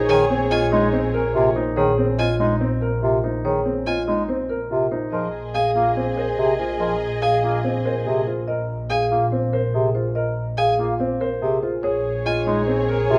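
A woody rosewood marimba carries the melody in this hypnotic, urgent minimalist classical pattern piece at 143 BPM in Bb minor, over natural, up-front grand piano arpeggios, a focused bowed double bass section holding Bb1 and a clear, roomy bass clarinet accompaniment, while a lush violin section and a soft-attack, distant French horn appear together at 0.0, 5.1 and 11.8 seconds, a single smooth violin adds light-vibrato arpeggios, and the harmony moves from Bbm9 to Fm7/Bb and back in a moderately reverberant large studio heard from further back.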